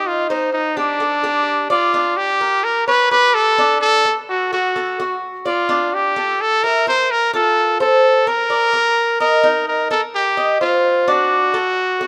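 Danceable and nostalgic, this Latin piece moves at 128 BPM in a straight 4/4, cut from a longer work and running about 12.1 seconds. A bright trumpet carries the melody from start to finish, sitting up front with a present, pop-style solo voice that ranges from D4 to C5. Beneath it, a Cuban tres plays picked arpeggios across the whole passage, its acoustic double strings giving a metallic shimmer, with some strings doubled at the octave, spanning D4 to E5 at a lower level than the trumpet. The harmony travels through colorful changes such as Ebmaj13, Dsus4, Gm, A7, Fadd11 and Bbadd11 before a D7#9 resolves to D near the end. A moderate plate reverb with a 3.2-second decay lends the pair a glossy, spacious sheen.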